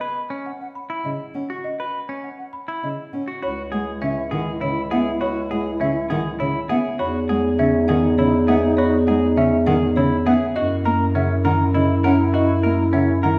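Set in a steady 3/4 at 101 BPM with a straight feel, this classical, minimalist pattern music moves with a propulsive, hypnotic pulse, cut from a longer piece. From the opening, a folk marimba played with medium mallets carries the melody in a woody, dry, rustic tone, while a clean electric guitar spins twangy, picked arpeggios beneath it. A mellow, hollow silver concert flute joins at 0.6 seconds with its own arpeggios, sitting distant in the background, and a smooth, bowed cello adds even accompaniment with vibrato just after. At 3.4 seconds the texture deepens: an airy, bright wooden-headed alto flute traces a narrow second line, and a dark bass clarinet takes up the bass, up front and roomy. The harmony shifts from a suspended F#7 over C# to C#m, then Emaj9 and F#7, all heard from further back in a wet recital hall.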